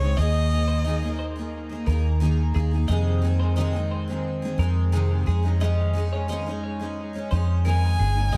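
A clear, focused violin sings a brief vibrato phrase over picked, double-tracked steel-string acoustic guitar and a round, punchy muted electric bass that sits up front, opening this easy-going, carefree pop clip at 88 BPM in a straight 4/4. A compressed, twangy twelve-string electric guitar slips in at 0.2 seconds with lush chorused arpeggios in the background, while the chords move from Ebsus4 to Fm7 to Dbadd9/F. The violin returns at 7.7 seconds, and dub echo on the violin and both guitars gives the lightly reverberant studio mix its echo-heavy character.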